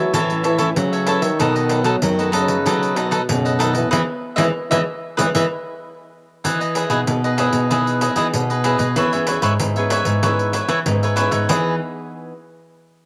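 A breathy, mellow trombone with light vibrato carries the melody from a distance in this short, playful samba and choro excerpt in E major at 95 BPM, falling silent at 5.4 seconds, partway through a band accent that begins at 3.9 seconds. A bright, crisp cavaquinho sits up front alongside a fingerpicked nylon-string guitar with audible finger squeak playing the bass line, while a second nylon-string guitar fingerpicks accompaniment in the background and a jingly pandeiro played with soft hands keeps time. The sunny home cassette recording carries moderate spring reverb, giving the trombone, cavaquinho, accompanying guitar and pandeiro a band-limited, vintage tint.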